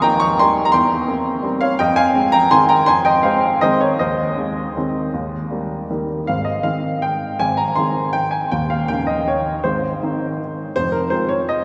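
A classical piano waltz in Ab major, this short passage cut from a longer piece has a sparkling, playful character. It moves in 3/4 at a lively 152-178 BPM with a rubato feel, so the pulse breathes freely. A solo upright piano carries the music across a range from Eb1 up to Db6, with a woody, polished tone, a short sustain and an up-front presence. The harmony opens on Eb and passes through C7/E, Fm7 and Ab/Eb before a new phrase begins at 6.3 s on Ab, later touching Eb5 and coming to rest on Fm7. The recording sits in a cathedral reverb with a long 5.1-second decay, as heard in a church or concert hall, giving the piano a lingering, spacious glow.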